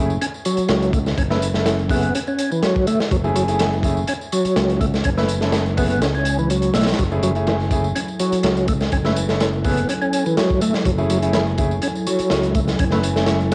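A crunchy breakbeat drum kit drives this funky, playful breaks cut at 124 BPM in a straight 4/4, its tight kick, medium-tuned snare and hi-hat sitting up front with a gritty, saturated, cassette-worn character, while a tape-softened tambourine sits in the background. The kick drops out from 6.0 to 7.0 seconds before returning. A bright, picked electric bass holds the low end under an F#m9 harmony, and a fat, lightly overdriven tonewheel organ plays the riff with key click, third-harmonic percussion, chorus vibrato, a slow rotary speaker and analog delay. A smooth, vintage grand piano adds stabs roughened by 12-bit sampler grit and trailed by analog delay. At 7.9 seconds a dark, warbling, detuned pad enters with slow-attack sustained chords, pumping against the sidechain and lingering in the background with chorus and its own reverb. The whole excerpt carries a home-cassette feel, wrapped in a moderate spring reverb.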